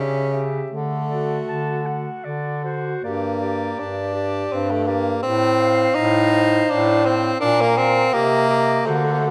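A solemn, melancholic classical excerpt for single-reed quartet in G minor, moving in a rubato 3/4 at around 75-85 BPM, where a distant, roomy clarinet carries the melody above a bright alto saxophone's smooth, vibrato-tinged second line, while a punchy, up-front tenor saxophone accompanies and a vintage-toned bass clarinet anchors the low end, all four sounding together throughout the 9.3 seconds in a concert hall with a 1.8-second reverb tail.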